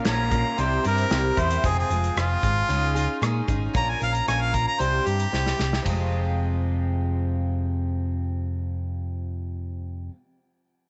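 A shimmering, octave-doubled twelve-string acoustic guitar opens this reflective, dusty folk and heartland rock excerpt together with a natural country drum kit with a punchy kick and medium-tuned snare, and a dark, slightly broken-up electric guitar riff with ensemble chorus that stops at 1.6 seconds. A clear, up-front harmonica with light vibrato, scooped notes and tape echo takes a solo over a round, amped picked electric bass in straight 4/4, and after a drum fill the harmonica and drums are gone by 6.0 seconds, leaving the acoustic guitar and bass. Light reverb lends the whole a small-room ambience.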